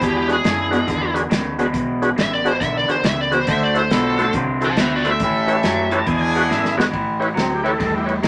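Gritty and swaggering, this short electric blues shuffle cut at 139 BPM opens with a bright, overdriven lead guitar solo over a lo-fi, slightly broken-up rhythm guitar riff, tight brilliant horn stabs, a round foam-muted bass, a dark soul drum kit with punchy kick, and a thick tonewheel organ through a slow rotary speaker that adds a fill from 5.6 seconds before the drums fill at 6.5 seconds and the progression returns to A7 at 6.9 seconds.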